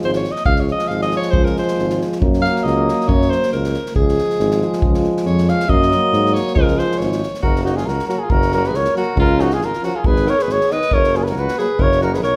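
A bright alto saxophone with light vibrato leads this wild, exuberant Balkan brass band excerpt, playing solo from the start until 7.4 s over a 2/4 pulse at 138 BPM in Db major. A clear trombone and a smooth-topped euphonium sit in the background, while a mellow tuba carries the bass and an acoustic drum kit with a punchy kick and a medium-tuned snare played with bundle sticks keeps time. At 7.4 s the key moves to F# major as a soft-toned flugelhorn takes the melody up front, the band heard from further back in a moderate recital hall reverb.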